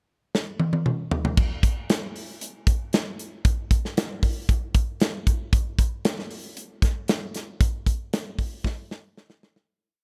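A small, acoustic room with light reverb frames this short pop piece, played entirely on a modern studio drum kit that sits up front in the mix. The mood is nocturnal and bittersweet, carried in a straight 4/4 feel. The kit enters at 0.3 seconds with a drum fill across the pickup bar, then settles into a crisp sixteenth-note studio groove through the verse. A tight kick and a medium-tuned snare anchor the pattern, with hi-hat, crash cymbal and toms rounding out the kit. The piece begins fading at 7.6 seconds, and a final drum fill from 8.6 seconds carries it to its close.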